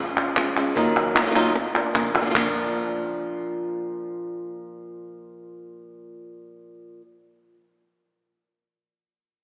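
A long, wet church reverb of 2.5 seconds fills this cut from a longer flamenco piece, heard through a small-speaker sound. The mood is intense and passionate, moving at 152 BPM in a straight 4/4 in Bb major. Up front, a dark, fingerpicked acoustic flamenco guitar carries the melody between Bb2 and F4, playing from 0.2 to 7.0 seconds. Crisp palmas hand claps, set up front in a small-room sound, join the guitar at the start alongside a snappy cajon with snares that sits in the background, and a drum fill arrives shortly before both percussion parts fall away at 2.4 seconds. The harmony passes from Db to Ebmadd9 and settles on Bb, after which the guitar continues alone in the reverberant space.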